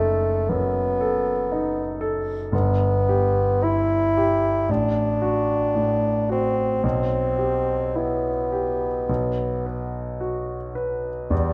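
Romantic classical chamber music for bassoon and grand piano, this short passage cut from a longer work has a solemn, yearning mood in E minor. It moves slowly at 53-60 BPM in 4/4, with a rubato feel. The mellow bassoon carries the melody between G3 and E4, sitting up front as a solo voice throughout the 11.5 seconds. The concert grand piano accompanies it the whole way, its clear tone reaching down to a deep bass. The harmony passes from B7/F# through Em/G, D7/A and Em/B before settling on a bare B5 at 9.1 seconds. Close, detailed microphones capture both instruments naturally within a moderate recital hall reverb, and the tuning sits slightly low at A4 = 439 Hz.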